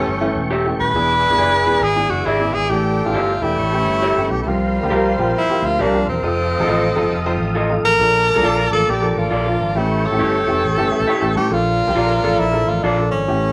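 Urgent and driving, this swung soul excerpt puts a breathy, clear tenor saxophone up front with vibrato over a background horn section and a tonewheel organ with chorus vibrato, key click and a slow rotary speaker, while an intimate baby grand piano, with audible action noise and a fill at 10.6 seconds, plays alongside a punchy fingered electric bass and dark, slightly broken-up lo-fi guitar stabs from a small old amp, all played live in one room with a moderate large studio reverb.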